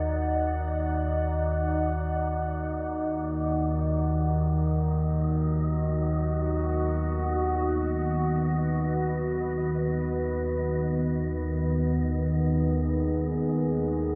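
In free time, this desolate, unsettling dark ambient drone excerpt pairs a moody, detuned sawtooth pad holding sustained chords from Ebm to B6/D# with an evolving pulse-width analog drone low beneath it, both up front with chorus, while a faint, breathy wind-like tuned noise texture hovers high and fades out across the 14.2 seconds, all bathed in a wet cathedral reverb.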